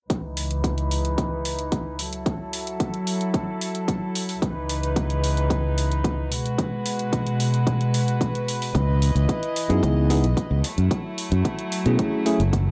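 A punchy, tape-softened electronic kick and hi-hat hold a straight pulse under this cosmic, groovy nu-disco fragment, while a floating, distant chamber string section sustains soft-attack chords that carry vintage sampler grit, sidechain pumping and a filter sweep. A fingered electric bass joins up front at 8.7 seconds, and a bright, bell-like tine electric piano with sidechain pumping and tape echo adds accompaniment from 9.7 seconds. The dry, gritty hardware sound has transformer saturation and little reverb.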